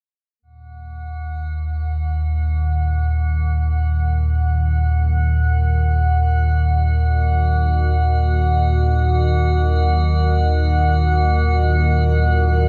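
Soaked in a lush hall reverb, this dreamy dark ambient drone feels ominous and desolate, resting on one minor chord throughout. A rumbling, nasal low drone with ring-modulated grit sits up front from 0.8 seconds, joined at 1.0 seconds by a metallic, inharmonic high tone that warbles eerily through chorus and shimmer reverb. At 1.7 seconds a deep, moody pad of detuned sawtooth and sine layers with a sub octave fades gradually into place in sustained chords, its own chorus and shimmer blurring it into the haze.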